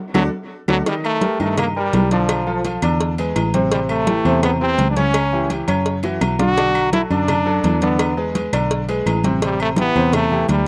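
Danceable and festive, this salsa excerpt runs at 168 BPM in 4/4, opening with a drum fill and band accent while a punchy, forceful trombone solo with vibrato and slapback echo carries the melody up front over chords such as Ebmaj7, E7 and Am7. A bright grand piano with vintage character and long sustain supplies the accompaniment, and a dark, round fingered electric bass sits prominently beneath it. The percussion blends low-tuned bongos and cowbell, ringing congas in the background, metal-shell timbales and agogo bells with a live room feel, and woody, saturated claves, with a second drum fill arriving at 6.0 seconds.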